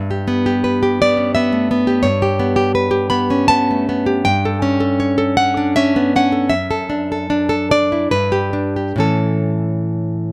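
Romantic solo classical guitar in a rubato 3/4, this nostalgic, tender fragment of a longer piece features a full-bodied, fingerpicked nylon-string guitar held up front by close, detailed microphones, where finger squeaks and a light reverb frame its drift from Em/G through A7/G and D/F# to G and A.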